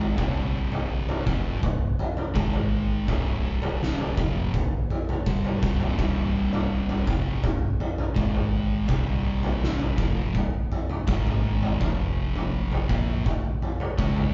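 A stoner and doom metal passage in C minor opens with the full band at once: an oversized, low-tuned acoustic drum kit sits up front with a punchy kick, a fat snare and toms, its dark, gritty, saturated tone coloured by a bright stone room, while a double-tracked, picked fuzz guitar grinds out a riff beside it. At 83 BPM in a straight 4/4, the riff moves between C5 and Ab5 chords before turning to F5 near 11.8 seconds, and a woody pizzicato upright bass with steel strings murmurs very quietly underneath. The mood is ominous and hypnotic, captured in the dry sound of a band playing live in one room.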